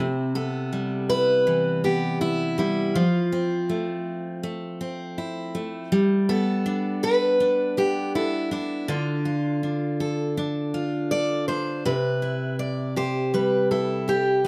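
A lightly swung 16th-note feel at 81 BPM in 4/4 carries this heartfelt, easy-going acoustic pop passage in C major, cut from a longer piece, where a full-bodied dreadnought steel-string guitar picks the accompaniment from 0.0 s while a bright auditorium steel-string guitar, with plate reverb and an audible finger squeak, picks the melody from 0.4 s, both up front under close, detailed microphones in a lightly reverberant room over Cmaj7, Fmaj7, Gadd9 and Dm before returning to Cmaj7 at 11.8 s.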